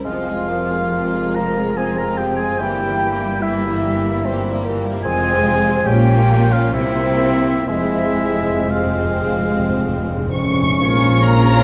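Solemn and yearning, this slow romantic orchestral movement in triple time breathes with a free rubato pulse, cut from a longer piece. Bowed violins carry an expressive melody rich in vibrato, while a lush second violin line with soft attacks and portamento sits distant beneath it, joined by an airy flute section and a solo oboe and clarinet in classical style. A mellow bassoon and a very quiet viola section fill in the accompaniment, a close-miked French horn section holds sustained chords, and a ringing, fingerpicked concert harp spins quiet arpeggios. Smooth, even cellos and a focused double bass section anchor the bass. Round, soft-mallet timpani on calf heads enter at 5.1 seconds and play a fill from 7.7 seconds, and at 10.8 seconds a smooth-topped tuba joins the low end while a barely audible, roomy trombone section adds sustained chords. The orchestra sits in a reverberant scoring-stage space.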